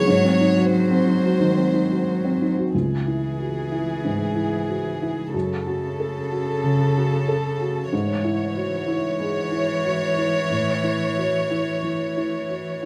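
Rubato in 4/4 at around 92 BPM, this fragile, longing neoclassical passage in C# minor is cut from a longer piece and moves from G#7 through C#m, F#m and C#m/G# to A. A felt-muted upright piano sits up front as mellow, intimate accompaniment with audible action noise, while a close chamber violin section carries the melody with vibrato, soft attacks and sul tasto bowing. Beneath them, a single cellist plays a second line with light vibrato and an airy bow, all in a moderate large-studio reverb of 1.1 s.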